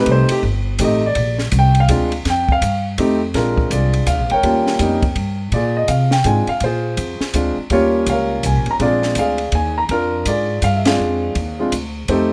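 A swung 3/4 lilt drives this relaxed, playful jazz piano trio excerpt, where an intimate, up-front grand piano, its action noise audible under a plate reverb, opens with a solo passage and carries the melody over ninth chords, starting from a rootless F9, a woody, thumpy pizzicato upright bass on gut strings anchors the low end, and a dry compact cocktail kit with dark cymbals, a high-tuned snare and a punchy kick keeps time softly behind them until the band lands an accent at 10.8 seconds.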